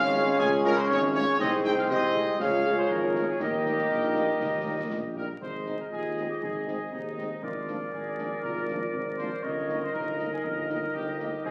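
The trumpet section opens this festive, rousing military-style march for wind band, carrying the melody up front with a smooth top, while woodwinds, euphonium, trombones and tuba sound together from the very start at 119 BPM in 2/4, in Ab major. The woodwind section adds a mellow second line with vibrato that feels distant and roomy, and a dark, close-miked euphonium sits in the background with a second line of its own. Trombones hold sustained chords with light vibrato until 5.2 seconds, while the tuba lays down a roomy bass and a very quiet French horn section fills in accompaniment from deep within the hall. Concert snare drum, bass drum and clash cymbals with dusky cymbal colour keep close but in the background. The harmony moves from Db through Eb before settling on Ab at 5.4 seconds, then passes through Bb7 over Ab and Eb7 over G. The whole is bathed in a large studio reverb and carries the crackle of a very old 78 rpm record, a short cut from a longer piece.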